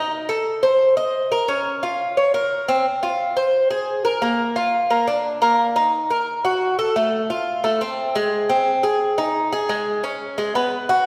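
Latin piece in Bb minor at 176 BPM, nostalgic and sultry, featuring a solo Cuban tres, bright and metallic with its picked double strings and some octave-doubled courses, sitting up front in a wet concert hall reverb across this 11.1-second section cut from a longer work.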